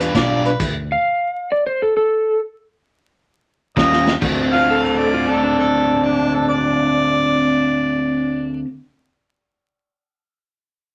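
A swung 133 BPM shuffle in 4/4 drives this soulful, rollicking electric blues excerpt in D mixolydian, where a vintage drum kit with dark cymbals and a punchy kick, a round fingered electric bass, a phaser-tinged overdriven guitar riff and a mellow harmonica with scooped notes drop out into a stop so the compressed, slightly broken-up electric slide guitar, played with fingerpicks, carries the melody alone from 0.9 s until a drum fill at 3.8 s brings the band back, all set in a short, wet studio reverb over a bed of vinyl crackle.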